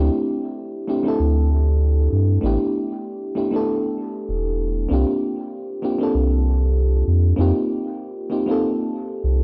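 Dry and gritty with a cassette-tape grain, this short sunset chillout clip from a longer piece moves at 97 BPM in a lightly swung 4/4 with a warm, smooth mood, as a soft, dark FM electric piano with chorus and analog delay sounds decaying chords from D9sus4 through A9sus4 and C9sus4 to F9sus4 over a deep, round sine sub bass given body by tube saturation, both parts sitting up front throughout.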